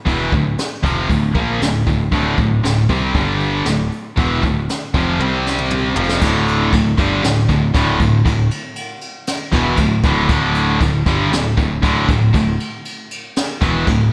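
Relentless and aggressive, this cut from a longer heavy metal piece runs at 118 BPM in D minor, pairing two bright, high-gain distorted guitars, one of them scooped, playing riffs up front over a growly picked electric bass in the background and a roomy jazz brush kit with dark cymbals, a high-tuned snare and a boomy kick, whose fill at 5.2 seconds leads into a half-time feel from 6.2 seconds, the mix set in a lush hall reverb with a big arena sound.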